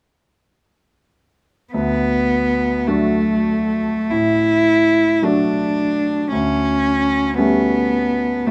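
A serene, lyrical fragment of a romantic classical duo in D major, this short excerpt unfolds in a slow, rubato 12/8 at roughly 47-57 dotted-quarter beats per minute. From 1.7 s, a single bowed cello sings the melody up front with a rich, smooth vibrato and an even line, while a grand piano of clear, vintage character and short sustain supports it in a lower register. Both parts sit in a moderate studio ambience, the harmony resting on D before moving to A7 over a D bass near 6.3 s.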